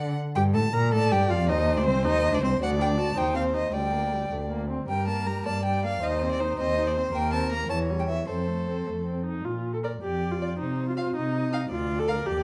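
Dramatic and restless, this quick classical-period string quartet movement in 6/8 at 106 BPM opens in G minor and turns toward Bb major from 7.1 s, with a clear, focused violin carrying the melody over a rich second violin, a warm viola with expressive portamento joining at 0.4 s, and a dark, up-front cello with soft attack anchoring the bass, all bowed with vibrato in a moderate recital hall reverb, in a passage cut from a longer piece.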